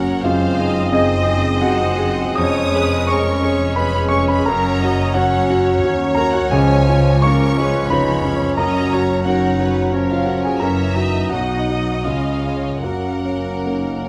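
In a rubato 3/4, this lyrical, lush romantic passage for piano and orchestra, cut from a longer movement, places a clear concert grand piano with deep bass and long sustain up front on the melody alongside a focused, distant violin section, while a punchy clarinet and a second, expressive violin section carry a second line over a smooth, even viola section and a warm solo bassoon, dark, soft-attacked French horns hold very quiet sustained chords, a rich cello section and a double bass section with portamento anchor the bass in the background, and timpani on calf heads barely surface at 8.6 s.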